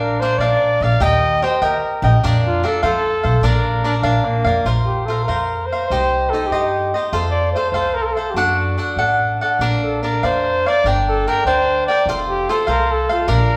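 Festive and romantic, this rubato mariachi passage in 6/8, cut from a longer piece, sets a warm, up-front trumpet with light vibrato and a smooth top singing the classical-style melody over a bright, crisply picked acoustic cavaquinho and a woody, thumpy pizzicato upright bass on gut strings, while a clear, soft-attacked second trumpet slips in briefly from 3.8 to 4.7 seconds, the band playing live together in one large studio room with wet reverb.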